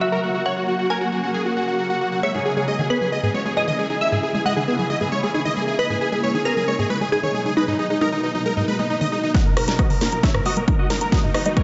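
Driving straight 4/4 at 135 BPM, this soaring, euphoric uplifting trance passage in G# minor, cut from a longer piece, opens with a huge detuned supersaw lead carrying the melody up front over a shimmering, ethereal pad and a glassy, crystalline wavetable pluck, with a tight sequenced arpeggio entering at 2.2 seconds, all sitting in a dreamy, reverb-soaked hall mix that moves through F#, C#m and G#m7. At 9.3 seconds the pluck gives way to a mellow plucky unison lead in the background as a punchy overdriven kick and a house kit with cracking snare and metallic hats launch a drum fill and build-up, while filter sweeps move across the supersaw and arpeggio over D#m. A very quiet riser slips in at 10.9 seconds, and sidechain pumping on the lead, pad, arpeggio and unison lead gives the passage its breathing pulse.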